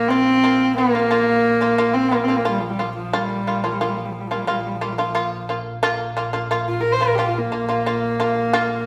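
Bathed in a wet stone-room reverb as a band plays live together, this proud, galloping Mongolian traditional excerpt places a rich, nasal, husky horsehead fiddle melody with light vibrato and portamento at the front, over buzzing, percussive plectrum-plucked shamisen arpeggios and a dark, woody bowed double bass drone on Bb1.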